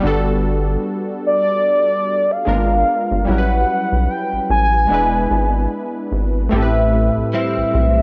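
Contemporary R&B at 74 BPM with a gently swung sixteenth feel, tender and romantic, moving through Gmaj7, G#dim7, A13 and E7 before reaching Am7. Detuned analog keys with chorus and plate reverb and a rubbery, hollow square-wave bass carry the harmony from the start, and at 1.3 seconds a mellow, horn-like synth lead with a soft attack, vibrato and phaser sings in a high register. At 6.5 seconds a clean, direct-recorded electric guitar adds picked, compressed arpeggios with ensemble chorus, the whole piece a homemade cassette recording with light reverb, cut from a longer work.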